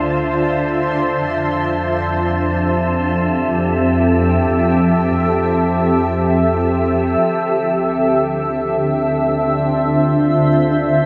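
Drifting in free time, this reflective, serene ambient excerpt in D minor moves from Dm7 to Fmaj7 and settles back on Dm7 at 7.2 seconds, all bathed in a huge, wet reverb with a long decay. A shimmering, ethereal pad with chorus sits up front holding sustained chords under a filter sweep, while a dark bowed double bass section fades in beneath it with light vibrato and a soft, intimate sul tasto tone. An airy, breathy wind-like noise texture fades in from the background before stopping at 7.3 seconds.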